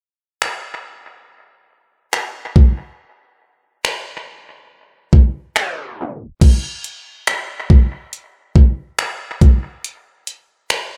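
An echo-heavy, dry-roomed mix with a tape stop at 5.6 seconds frames this dreamy, tender R&B fragment, where an up-front electronic drum kit, re-recorded in a small room, lays a knocking kick, warm hi-hats, finger snaps and crash cymbal in straight 4/4 from 0.4 to 10.9 seconds.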